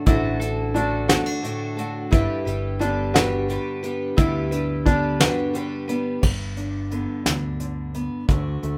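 A soft brush drum kit stands out most, sitting up front with dark cymbals, a tight kick and a medium-tuned snare, in this short excerpt of nostalgic, hopeful indie folk with a building arrangement, moving at 58 BPM in a straight 6/8. A fingerpicked steel-string acoustic guitar with fresh strings and a full-bodied tone carries the accompaniment throughout, joined by a picked twelve-string acoustic guitar with old strings and a woody, octave-doubled shimmer until it stops at 6.2 seconds. An upright piano with a woody, short-sustained voice plays arpeggios in a narrow range until about 5.9 seconds. Underneath, a picked electric bass gives a round, punchy, amped low end. The harmony moves from D to G, and after 6.2 seconds a new section begins as the band plays live together in one room with light reverb.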